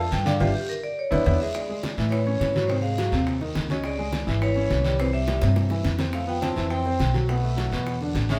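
A woody, thumpy upright bass sits up front in this lively, sophisticated Afro-Cuban jazz excerpt at 209 BPM in a straight 4/4, while a metallic, ringing vibraphone played with medium mallets opens with a brief solo across the first second and a half. A warm baby grand piano supplies natural-sounding accompaniment through chords such as Amaj7, G#7, C#m, C and Fmaj7, and a clear tenor saxophone with vibrato enters at 1.4 seconds as a second line. Low-tuned, thick-skinned congas and round cowbell and bongos keep to the background alongside a raspy, saturated guiro, all captured as a band playing live in a moderate stone room.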